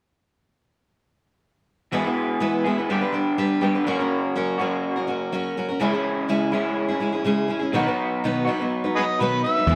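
Hopeful and open-road in spirit, this straight 4/4 rock passage, cut from a longer piece, opens at 1.9 seconds with a picked steel-string acoustic guitar carrying the accompaniment beside a slightly broken-up, lo-fi electric guitar riff through a small old amp with subtle chorus, moving through E, G, F#, C#m and B. An overdriven, gritty harmonica with light vibrato and tongue slaps takes the melody at 9.0 seconds, and a bright, direct picked electric bass sounds an E at 9.7 seconds. All four parts sit up front in a moderate echo-chamber reverb.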